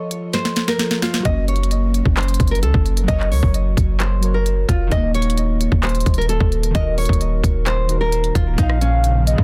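An eerie, hard-hitting trap excerpt at 131 BPM in a half-time 4/4 feel, moving through F, Gb, Ebm and Bbm. A fingerpicked classical nylon-string guitar carries the melody from the start, its notes trailed by digital delay, while glassy digital keys with chorus and a filter sweep supply the accompaniment. The electronic trap kit sits up front with a hard-clipped kick, sharp snare, crisp hats, rim clicks and handclaps, opening with a break and a drum fill before the deep, boomy 808-style bass drops in at 1.3 seconds. Near the close, a hollow, woody clarinet-like synth lead adds a soft second line with vibrato, chorus and phaser at 8.6 seconds, and a cloudy granular pad blooms with blurred, evolving sustained chords shortly after. The sound is dry and dense, with a heavily limited modern master.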